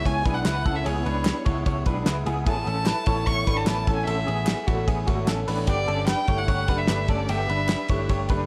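A distant, smooth bowed violin carries the melody with vibrato and a slapback echo in this short, nostalgic yet bright jangly indie pop clip. Underneath, a full-bodied fingerpicked steel-string acoustic guitar and lo-fi, slightly broken-up electric guitar arpeggios with tremolo and slapback echo move through C#m7, Aadd9 and Gadd9. A round, punchy muted electric bass and a cloth-damped, thuddy drum kit with dark cymbals and a tight kick anchor the groove, while crisp, close and dry group handclaps sit in the background and a light reverb gives the mix its space.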